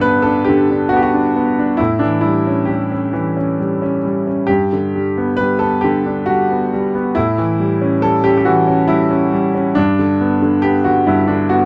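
In a gently rubato 3/4 at 68 BPM, this tender, calm fragment of classical solo piano unfolds in G lydian, cut from a longer piece. A single bright baby grand carries everything from 0.0 to 11.7 seconds, moving between G2 and B4 with a brilliant, natural tone. The harmony rocks between G and A7, returning to G at 9.8 seconds. The instrument sits up front and intimate, with its action noise clearly audible beneath the notes. A light reverb surrounds it, and the overall production leans dark and warm, framing the lyrical mood.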